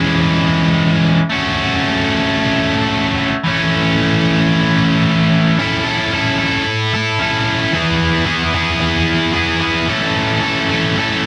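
Carefree and upbeat, this short rock excerpt moves at 112 BPM in a straight 4/4, with a single high-gain distorted electric guitar playing alone from start to finish at 11.3 seconds. The bright, picked, double-tracked guitar sits up front, ranging from E3 to A4 over chords that run from C#m through F#m and A, then shift to E at 7.7 seconds before settling back on A. A wet studio reverb and a dark, warm production round out the sound, with the tuning set to A4 = 438 Hz.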